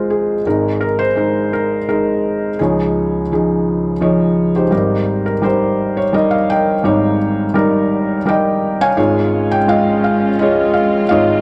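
A felt-muted upright piano, soft and mellow with audible action noise and sitting up front, carries the melody of this heartfelt, nostalgic acoustic folk-pop ballad in 3/4, drifting through Absus2 and Dbadd9 chords before a dark, bowed string section with light vibrato and a sul tasto touch enters at 9.0 seconds with sustained chords beneath it, all set in a moderate large-studio reverb and captured with close, detailed microphones in a short cut from a longer piece.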